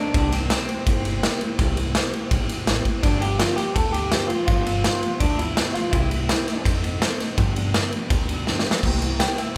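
This upbeat, retro rockabilly excerpt has the lightly reverberant sound of a band playing live in one room, moving at 166 BPM in 4/4 with a straight feel in C mixolydian. A twangy, slightly broken-up electric guitar through a small old amp carries the melody with spring reverb and a lo-fi edge, dropping out at 6.6 seconds and returning briefly near the close. Behind it, a full-bodied jumbo steel-string acoustic guitar is picked in the background, its bright tone dotted with finger squeak, while an upright bass with gut strings plucks a woody, thumpy low line. The raw garage drum kit sits up front, saturated and gritty with a rolled-off top, a punchy kick, a medium-tuned snare, crash and ride cymbals, and a pumping stone-room ambience, capped by a fill at 8.5 seconds. The harmony moves from C7 to G7 and back to C7, then through F7 and G7 before settling back on C7.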